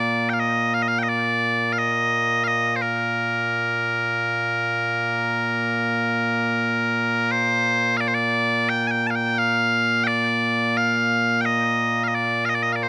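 Ceremonial and stirring, this short cut from a longer piece of Scottish traditional pipe music features solo bagpipes, loud, bright and piercing, sounding continuously up front at 87 BPM in a straight 4/4 in Bb major, ranging from Bb2 to A5 with a slapback echo in a dry open-air setting, moving into a new section at 7.3 seconds before ending at 12.9 seconds.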